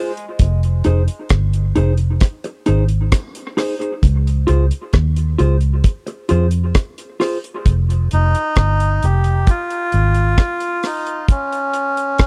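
Dub reggae at a slow 66 BPM in F minor, hypnotic and meditative, built on a dry, dark drum kit with a tight kick, hi-hat and rim click, and a round, foam-muted fingered bass with tube saturation sitting up front under Fm7 and Dbmaj7 chords. A clean, compressed electric guitar adds mellow dub-echoed accompaniment until 7.4 seconds, and at 8.1 seconds a reedy, breathy, nasal melodica takes the melody with its own dub echo. The bass drops out at 10.4 seconds, leaving drums and melodica in this close, 1970s-style studio sound.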